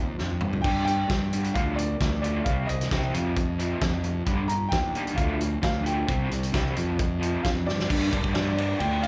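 Moody and bittersweet, this short indie rock excerpt in G minor moves at a straight 132 BPM, heard as a live gig through the venue's PA with club reverb. A woody upright piano carries the melody with audible action noise and slapback and tape echo, over a dark, double-tracked garage guitar riff with overdrive and harmonic tremolo and a round, fuzzy electric bass pushed up front. A loose kit with a fat snare and tight kick comes in with a fill at 0.2 seconds, and another fill at 7.7 seconds leads into a new section landing on G minor at 7.9 seconds.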